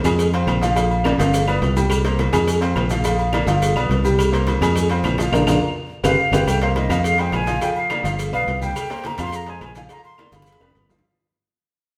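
A driving salsa groove in 4/4 at 210 BPM sets a danceable pulse from the first beat, carried by a dense bed of percussion: ringing, metal-shelled agogo bells and timbales sit close, while tight, high-tuned cowbell and bongos struck with hard hands sound compressed and saturated in the background. Grainy, mellow maracas are near at hand, woody claves sound distant in a large room, and low-tuned, thick-skinned congas stay very quiet far back in the space. Up front, a round, dark fingered electric bass anchors the harmony, and a bright upright piano with audible action noise supplies polished, intimate accompaniment through a cycle of Fm, Bb, G7 and C chords. Drum fills punctuate the groove, and a band accent lands just before the second section begins at 6.5 seconds, when the music starts to fade out. At 6.1 seconds a hollow, airy concert flute enters close-miked with vibrato and a crisp attack, carrying the melody over the band as it plays together in a stone room with a wet reverb.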